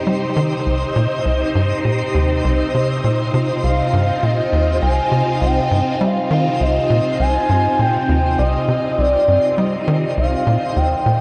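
Ambient, sequencer-driven space music in C minor at 101 BPM, this expansive, cosmic excerpt rests on a single C minor chord, with a tight, punchy sequencer bass driving a nasal sawtooth riff under swirling vintage string-machine chords treated with ensemble chorus and phaser, while a twinkling granular texture adds sparkling, octave-up shimmer in its own built-in reverb. At 3.6 seconds an expressive synth lead enters with a smooth, evolving sawtooth melody, dark in tone, carrying vibrato, lush chorus and delay. The whole excerpt sits in a huge, wet ambient reverb with a 7.9-second tail and the worn, warbling pitch drift of old cassette tape.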